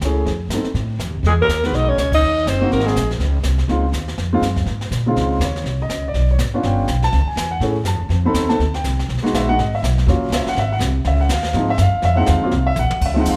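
A moderate recital-hall reverb gives this short cut from a longer small-group swing and bop performance a roomy, church-like glow, with the woody, growly upright bass and the deep-bottomed concert grand piano both sitting up front. At a brisk 245 BPM in 4/4 with a swung eighth-note feel, the mood is sophisticated and playful, moving through rich Db major harmony full of major-ninth and sharp-eleven chords. The piano accompanies and the pizzicato bass plays beneath throughout, while a brushed drum kit with a high-tuned snare, boomy kick and airy, polished sound sits lower in the mix. At 1.3 seconds a raspy, gritty alto saxophone with vibrato takes the melody, paired with a dark, whispered tenor saxophone playing a breathy subtone second line with scooped notes and soft attacks, the two horns voiced an octave apart. The band hits an accent at 2.1 seconds during the brief horn statement, and the drums close the passage with a fill at 12.8 seconds.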